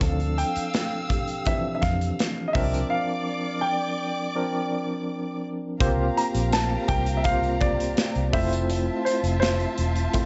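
A straight 4/4 groove carries this short cut from a longer piece of lush 1970s-style soul, its mood silky and smooth. A modern studio drum kit with a punchy kick, a medium-tuned snare and hi-hat sits up front in a pumping room sound, while a vintage foam-muted fingered electric bass anchors the low end with a dark, round, amped tone. The clear grand piano carries the melody with an intimate, natural quality and audible action noise. A barky tine electric piano through a combo amp comps with fast tremolo, and a symphonic violin section adds a bowed second line with vibrato, soft attacks and a smooth top. A very quiet vibraphone played with soft mallets enters at 1.1 seconds with a mellow, ringing shimmer and slow motor vibrato. A break arrives at 2.9 seconds, the vibraphone drops out at 8.7 seconds, and the harmony moves from Dm7 and C9sus4 through C7sus4 to Fmaj7, all in a small room with light reverb and a softened top end.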